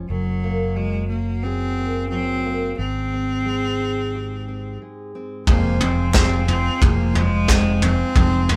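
A fingerpicked dreadnought acoustic guitar and a round, dark fingered electric bass open this stirring, bittersweet indie folk excerpt. A bright, biting solo cello joins almost at once and carries the melody up front with light vibrato and intense bowing. The piece is in F minor at 89 BPM in a straight 4/4, and the harmony moves from Gbadd9 to Abmaj7 before a short break. At 5.5 seconds the arrangement builds as the chord settles on Fm and the fingerpicked guitar gives way to a fuller band. A punchy vintage brush kit sits mid-forward with a rolled-off top, a reedy, breathing harmonium holds full sustained chords, a picked auditorium guitar stays in the background, and a dark, mellow baby grand adds very quiet, intimate notes with audible action noise. A crisp group handclap enters at 6.1 seconds, close and dry behind the band, and light reverb gives the whole performance the feel of musicians playing live in one room.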